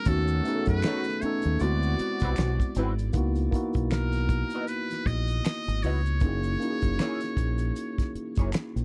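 A swung 78 BPM groove in 4/4 carries this late-night, introspective neo-soul R&B excerpt, set up by a damped 70s drum kit with a fat snare, tight kick, hi-hat and finger snaps, a round, dark fingered dub bass up front, and maracas with handclaps tucked far in the background. A worn, slightly out-of-tune tine electric piano, lightly overdriven through its built-in speakers, comps over chords moving from D#m7b5 and D13 to C#m11 and F#9, while a smooth saxophone section adds brief background stabs until 2.7 s. A distant, buzzy trumpet with metal mute sings the melody with scooped notes and light vibrato, joined from 0.9 s by a hollow-bodied archtop guitar playing a clean second line through wah, all in a dry, close 1970s-style small-room sound.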